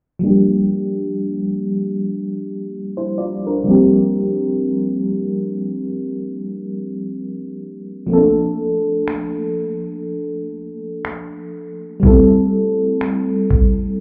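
Heard muffled as if through a wall, with club ambience and a moderate plate reverb, this late-night, sensual contemporary R&B excerpt moves at a slow 61 BPM in 4/4 with swung 16ths in G dorian. A mellow FM electric piano, up front with a noise layer and a low-pass filter sweep, carries the chords from Gm7 through C7sus4 and Bbmaj7 to Am7. At 9.1 s a gritty, tape-warm sampler-style drum kit enters with finger snaps and a thumpy kick.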